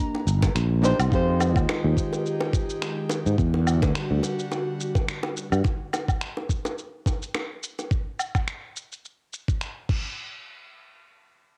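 Relaxed and wistful, this sunset chillout fragment, cut from a longer piece, rides a gently swung 4/4 groove under a light reverb and the soft haze of a home cassette recording. A distant concert flute offers only the briefest airy, vibrato-tinged phrase at the very start, while a fingerpicked flamenco guitar adds mellow accompaniment through its low-pass filter, cassette and analog delay, with a filter sweep shaping it from 1.1 seconds. A gritty, thumpy electronic kick sits up front alongside a dusty sampler-style kit of crash, hi-hat, finger snaps, shaker and woodblock, and tight, high-tuned bongos played with hard hands add acoustic snap. A growly, punchy fretless bass holds the low end until 5.6 seconds, joined from 1.1 seconds by a breathy, detuned pad with chorus and a slow attack. The harmony moves from Cm9 to Fm9 and Em9 before dropping away, leaving the drums and bongos to carry the groove.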